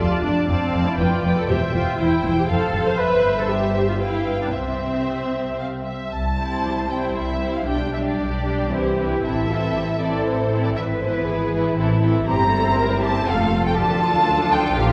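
A quick 3/4 pulse at 118 BPM, loosened by rubato, carries this graceful, cheerful classical-period string orchestra excerpt in C major, where muted violins sing a veiled melody over a distant second violin line, lush violas supply accompaniment, background cellos and up-front double basses anchor the bass with dark, soft-edged vibrato, all bathed in a concert hall reverb heard from further back, with a new section arriving at 6.1 seconds.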